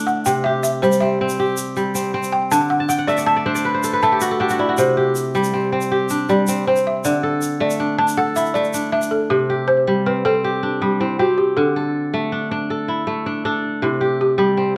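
West African traditional string and xylophone music in a hypnotic, flowing 12/8 at 106 BPM in C lydian, this fragment of a longer piece sets a ringing, crisp, fingerpicked kora up front on arpeggios (adding a fill from 2.8 to 4.8 seconds) beneath a round, woody balafon melody struck with soft rubber mallets and touched by slapback echo that takes the solo spotlight until 9.3 seconds, while a grainy tube shaker sits low in the mix until 9.1 seconds, all carried by a moderate recital-hall reverb.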